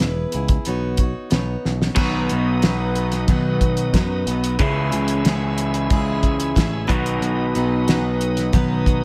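A straight 4/4 groove at 91 BPM from a cloth-damped, thuddy drum kit with a fat snare, tight kick and dark cymbals drives this open-road blend of folk rock and heartland rock. From the start it is joined by picked electric bass and a full-bodied jumbo acoustic guitar with fresh strings and audible finger squeak. After a drum fill at 1.6 seconds, a slightly broken-up, lo-fi electric guitar riff comes in up front at 1.9 seconds, and a reedy, bright tonewheel organ with key click and slow rotary speaker adds soft sustained chords from 2.0 seconds, as the harmony moves from E and Badd9 to B, C#m and back to B in a light reverb.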